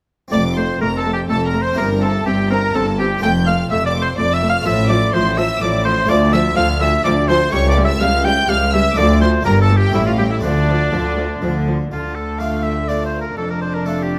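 A festive, lively baroque-style concerto movement in 3/4 at 124 BPM, cut from a longer piece, sets a bright, up-front oboe melody over a rich violin section carrying the melody higher up, clear second violins and a dry, close-miked French-style harpsichord in the background, lush violas with soft-attack portamento, and distant cellos with double basses underneath, moving from F major into D minor at 6.1 seconds in a recital hall with moderate reverb.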